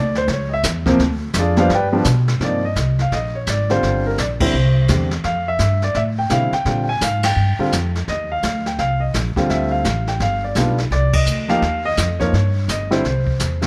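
A short grand piano solo opens this moody, swinging jazz piano trio cut from a longer piece, with upright bass and a brushed drum kit sounding from the very start. The up-front piano carries the melody in a warm tone, moving through shifting minor-leaning harmonies such as Dbmmaj7, Cm9, Fmaj7 and Ebsus2. The upright bass is plucked and sits prominently in the mix, with a woody, thumpy body on steel strings. The drums sit a little farther back, mixing brushed snare with hi-hat, ride and crash cymbals and kick. Their dark cymbals and boomy kick give the kit a rolled-off, warm character. The full band hits unified accents at 4.4, 7.2 and 11.1 seconds, and light reverb and close, detailed miking keep the trio intimate.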